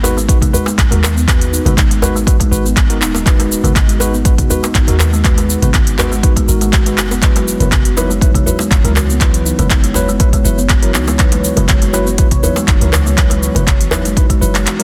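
A dense, heavily limited modern master in digital ambience frames this hypnotic, driving afro house excerpt at 121 BPM in G# minor, moving from G#m7 to F#7sus4 at 7.2 seconds. An overdriven electronic kick leads the low end alongside a boomy, tube-saturated 808-style bass, while an afro-pop kit supplies crisp hats, handclaps, shaker and toms, and a tight, cracking djembe sits close and dry in the background. Woody, buzzing kalimba arpeggios and clean tine electric piano stabs with 12-bit sampler grit both carry tape echo, and from 0.7 seconds a moody sawtooth pad with chorus and phaser holds sustained chords behind them, with the sidechain pumping shared by the pad, kalimba, electric piano and bass.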